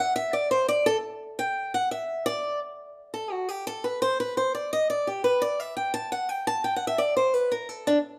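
A bright, boxy steel-string acoustic guitar carries this lively, driving bluegrass excerpt alone, picked in a swing style with audible finger squeak as it sits up front in the mix. Its solo line spans a modest upper-middle range and runs through a repeated phrase, the second pass beginning at 2.8 seconds. A moderate studio reverb gives the playing a touch of room around it.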